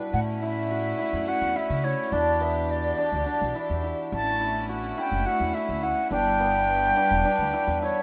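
A breathy concert flute carries the hopeful, playful melody up front, its straight tone and soft attack sitting close, while a bright hammered dulcimer rings out shimmering arpeggios beside it. Underneath, a woody pizzicato upright bass gives a thumpy gut-string pulse, and a distant, earthy chamber string section holds rich bowed chords with light vibrato. This contemporary chamber piece in 7/8, cut from a longer work and set in light reverb, moves through A, Em7, A and G across its 8 seconds.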